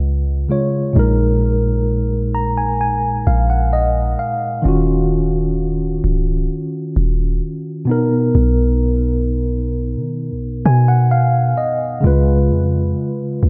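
Soaked in dreamy church reverb, this late-night contemporary R&B excerpt in Eb minor drifts at a slow 65 BPM with a longing mood, as an up-front, mellow tine electric piano spins chords from Db7 to Ebm9 and Bmaj7, adding fills at 1.9 s and again at 10.2 s, over a deep, boomy 808-style bass with a sine core, a noise layer, a fast attack and a decaying tail.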